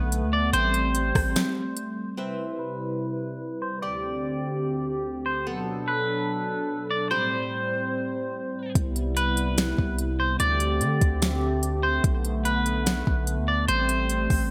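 Up front, a twangy electric guitar at the edge of break-up carries a filtered, delay-trailed melody over a hollow, flute-like pad with chorus and sidechain pumping in this dreamy, floating half-time cloud-rap excerpt, where a bright-edged qanun shimmers in the background until 8.8 seconds, the moment a deep, mellow 808-style bass and a smooth R&B drum kit with a fat snare and gated reverb return after a break that begins at 1.4 seconds, all set in a plate-reverb ambience with bright 1980s-style digital production.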